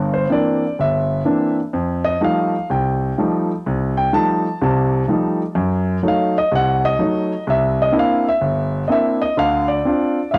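A warm, up-front grand piano plays alone through this sophisticated, playful solo jazz passage cut from a longer piece, swinging from C9 through F9 and F#dim7 back to C9 before reaching Dm7, its cassette-tape coloring set within the light reverb and small-room ambience of a home recording.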